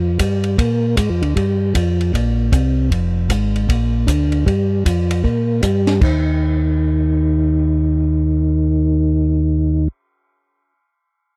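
A dry, close 1970s-style studio sound frames this greasy, swinging soul jazz organ trio excerpt at 155 BPM, where an up-front tonewheel organ, smooth and clean with key click, chorus vibrato and a slow rotary speaker, carries the bass line from F1 to Bb2 throughout, while a compact cocktail drum kit with a dark small-room tone, high-tuned snare, punchy kick, hi-hat, ride and crash plays from 0.2 to 6.1 seconds.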